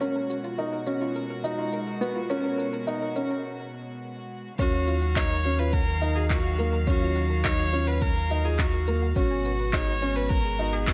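A dark, mellow grand piano riff with digital delay leads this hypnotic, melancholic piano-and-strings electronica excerpt in Eb minor at 105 BPM, set over reedy, gut-toned sustained strings, a soft round pluck arpeggio pumping in the background, and a high-passed electronic shaker and handclaps, until a drop at 4.6 seconds brings in a nasal, airy-bowed solo viola melody, a deep sine sub bass and an electronic kick, all in a lush hall reverb.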